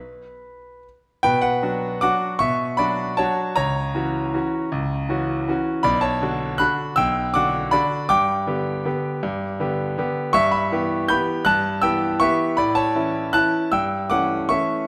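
Set up front in a moderate recital-hall reverb, a brilliant concert grand with deep bass plays alone throughout this brief, elegant and playful classical waltz passage in 3/4, its rubato phrasing sweeping from B minor through G, E minor and A harmonies until the cut at 14.9 seconds.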